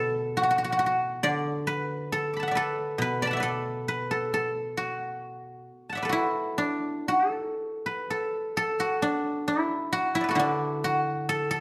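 The rhythm flows freely in rubato over a loose four-beat frame, giving this short passage of Chinese traditional solo plucked-string music an unhurried, breathing pulse. A lone guzheng, played with fingerpicks, carries everything from 0.0 to 11.6 seconds, ranging from deep low notes up to bright high ones. Its tone is silvery and ringing, with an acoustic warmth, and it sits up front in the sound. A moderate recital-hall reverb lets each plucked note bloom and linger in the space. At 8.6 seconds the music moves into a new section before the clip ends, having been cut from a longer piece. The mood throughout is elegant and serene.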